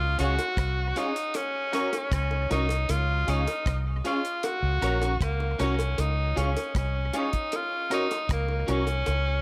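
Roots reggae at 78 BPM in a straight 4/4, this hypnotic, serious excerpt from a longer piece sways between Db and Gb under a moderate spring reverb. A bright, vintage-toned tenor saxophone carries the solo melody up front with vibrato, scooped notes and tape echo, over a dark, round, foam-muted fingered bass that sits punchy and forward from 0.0 seconds. Tucked behind them from 0.2 seconds are a clean, picked electric guitar with ensemble chorus and tape echo and stabs from a brilliant, woody, slightly detuned upright piano. A deep, dry reggae kit with a tight kick, hi-hat and rim click enters at the same moment, and high-tuned, band-limited bongos played with hard hands join in the background from 0.4 seconds.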